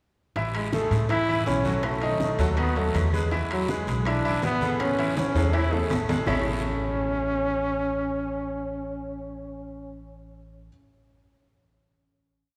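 Sunny and danceable, this short salsa piece in A major at 162 BPM sets a punchy, vibrato-laced trombone playing hook phrases up front over a brilliant baby grand piano montuno in octaves with audible action noise, a dark, thumpy pizzicato upright bass tumbao that anticipates the chords, and quiet percussion from round bongos with hand bell, thick-skinned congas with slaps and open strokes, ringing metal-shell timbales, distant woody claves and a raspy guiro, all washed in a long church reverb, until a drum fill at 5.2 s ends the percussion at 6.4 s and a final chord rings from 6.3 s.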